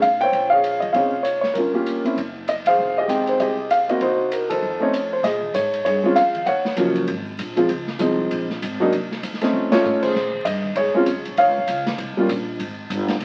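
A brisk swing at 196 BPM in 4/4 drives this short jazz piano trio excerpt, with a late-night, swinging mood. A smooth, vintage grand piano sits up front and carries the melody through minor-leaning harmony that opens on Bbm11 and passes through chords such as Fm9, Dbmaj9 and F7b13, before the piano drops out at 12.3 s. Underneath, a woody, thumpy pizzicato upright bass holds down the low end, while an airy, polished drum kit with dark cymbals, a medium-tuned snare and a boomy kick keeps time on ride, hi-hat and crash. The trio hits ensemble accents, including one at 2.6 seconds, and a quick drum fill arrives around 9.5 seconds, well into the tune's second section. Moderate studio reverb gives the group a small-room feel, and the whole recording carries the crackle and aged character of a very old 78 rpm record.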